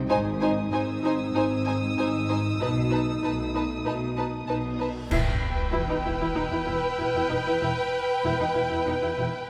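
Tense and eerie, this 96 BPM suspense film score excerpt sets dark, distant French horns holding sustained chords until 4.8 s against lush bowed violins (a high melody, a second line and a faint upper texture), expressive violas with portamento, focused studio cellos and woody double basses, while dark cymbals, clash cymbals and concert bass drum enter at 2.6 s and a huge background reverse cymbal and sub drop lead into an impact at 5.1 s, where the harmony settles into E harmonic minor in a moderate scoring-stage reverb.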